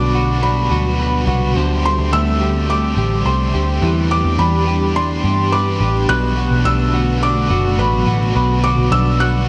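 Ethereal and floating, this dream pop excerpt drifts along at 106 BPM in a straight 4/4, settled in G major and tuned slightly low to A4 = 438 Hz. A felt-muted upright piano carries the melody high in its register, its soft, intimate tone touched with thin felt, audible action noise and a trail of delay. Beneath it, a dark electric guitar at the edge of break-up plays fingered arpeggios through subtle chorus and delay, while a bright, overdriven, double-tracked cranked stack guitar adds picked accompaniment colored by tremolo and subtle chorus. An airy, detuned sawtooth-and-triangle pad sits in the background with slow-attack sustained chords, ensemble chorus and its own reverb, and a round, punchy, foam-muted picked electric bass stands up front to anchor the low end. All five parts play throughout the 9.5 seconds over a progression of Gmaj7/B, D7sus4, Em7 and Bm7, returning to Gmaj7/B at 8.4 seconds, all set in light reverb and digital ambience.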